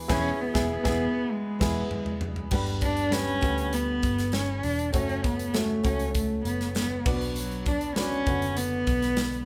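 A dark, bowed cello carries the melody up front in this hopeful piano-driven pop excerpt, played close by one player with vibrato and a sul tasto tone. An intimate upright piano supplies the accompaniment, its woody, natural sound carrying audible action noise, while a round, foam-muted electric bass sits beneath with an amped character. A polished, airy studio drum kit with a tight kick and a medium-tuned snare opens with a fill and a band accent. A fingerpicked dreadnought acoustic guitar plays a full-bodied riff in the background until 1.8 seconds. At 2.5 seconds a very quiet, jingly tambourine joins with a compressed, saturated edge, as the chords move from E through G and F#m to Bm, and the band plays live in one room within a moderate large studio reverb.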